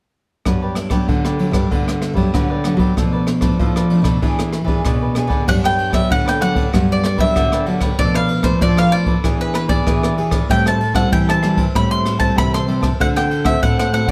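A bright, picked bowl-back mandolin carries the melody from 5.5 seconds, its double strings ringing up front in this lively, joyful samba and choro fragment cut from a longer piece. Underneath, a crisp cavaquinho and a fingerpicked classical nylon-string guitar with audible finger squeak supply the accompaniment, while a second nylon-string guitar, full-bodied and deep, holds down the bass line. A jazz kit played with brushes sits up front in a studio room, its dark cymbals, boomy kick and rim clicks marking a straight 4/4 feel. The harmony moves through Gmaj7, Bm7b5 and E7, and after the mandolin's entrance that cycle returns before turning toward Am7 and D7. The whole ensemble is heard from further back in a small room with a moderate, short reverb, giving the guitars a warm, intimate glow.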